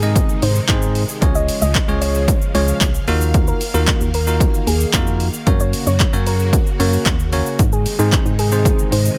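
An upbeat, carefree dance-pop excerpt at 113 BPM in Db major opens with its full arrangement together: a punchy analog drum machine sits up front with kick, handclaps, hi-hat and shaker, under a dark, hollow organ-like FM bass that pumps with sidechain, and a bright, bell-like tine electric piano playing clean accompaniment. Vintage string-machine violas hold slow-attack sawtooth chords with ensemble chorus and pumping, while a soft, round pluck with chorus, a noise layer and a filter sweep carries a gentle, nasal melody. The chords move from Ab through Db, Ebmadd9 and Gb back to Ab over about 9 seconds, all set in a digital ambience.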